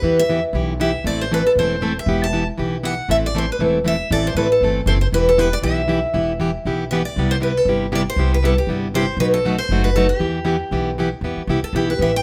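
A bright, picked steel-string acoustic guitar opens at once with the melody, sitting up front and bathed in plate reverb, while a second, plugged-in steel-string guitar supplies a warm, picked accompaniment and an upright bass plays pizzicato beneath them. This is acoustic string swing in the jazz manouche style, fast and swinging, with a bittersweet mood in a minor key. The lead guitar carries the tune in a high register, and the accompanying guitar fills the middle ground. The bass, on gut strings, sounds woody, dark and thumpy, anchoring the low end. The harmony rocks between Em and Am before moving through Cmaj7 and a tense B7b9, then settling back on Em at 10.2 s. All three parts play together throughout this short passage cut from a longer piece, heard in a moderate studio room with an auditorium-like presence around the guitars.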